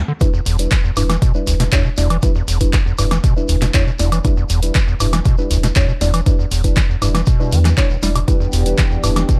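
Raw and gritty, this dark, dry acid house excerpt in E minor at 119 BPM opens with a drum fill before the drop lands at 0.2 s: an up-front, punchy kick, a tape-warm analog drum machine of handclaps, hi-hat, snare and woodblock, and a grainy shekere in the background drive a squelchy, resonant overdriven acid bass riff and a round sine sub bass, both pumping against the sidechain, while nasal, full-bodied chord stabs on Em7 ring through chorus and tape echo, and a smooth, detuned sawtooth analog pad with chorus and sidechain pumping slips in at 8.3 s.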